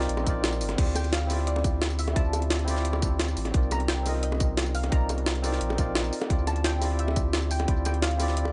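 Liquid drum and bass with a melancholic, soulful mood, cut from a longer piece, where a tight, up-front electronic kick (dropping out between 0.4 and 0.8 seconds) and a gritty, pitched-up sampler-style jungle kit with a high-tuned snare, hi-hat, tambourine and crash ride over a deep sine sub bass, while very quiet hand-struck bongos, a barky, clean tine electric piano with dub echo and a dark, soft pluck melody washed in chorus and echo drift between minor eleventh chords in an echo-heavy, dull-topped ambience.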